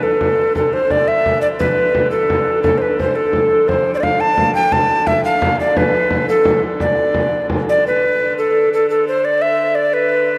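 Bathed in a wet church reverb, this driving, mysterious medieval dance excerpt in D dorian moves at 115 BPM in a straight 6/8, with an up-front tenor recorder carrying the airy, chiffy melody with vibrato and tape echo, a clear, biting hurdy-gurdy holding a distant D3 drone, and a deep frame drum sounding from afar until 7.7 s.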